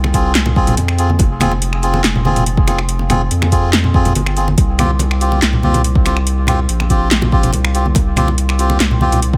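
Lightly reverberant and cavernous, this brooding deep dubstep excerpt in F minor moves at 142 BPM in a half-time feel, built on a thick, up-front saturated sub bass, a deep electronic kick and a deep house kit of finger snaps, handclaps, metallic hi-hat and punchy snare, both drum parts carrying overdrive, while bright, compressed congas in the background and reedy, breathy melodica stabs both carry dub echo over a move from Fm to Csus4 at 4.6 seconds.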